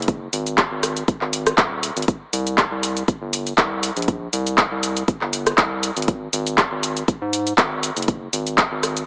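A round, dark analog bass with a fast filter pluck opens together with a house drum kit of bright hi-hats, cabasa, handclaps and rim clicks, and a punchy electronic kick joins at 0.1 seconds to drive a hypnotic deep house groove at 120 BPM in 4/4 with a light 16th-note swing. The bass pumps against the sidechain and sits deep between Eb1 and Ab2, while both drum parts sit up front in a small room ambience. A wet spring reverb and a small-speaker sound color this short, warm cut from a longer piece.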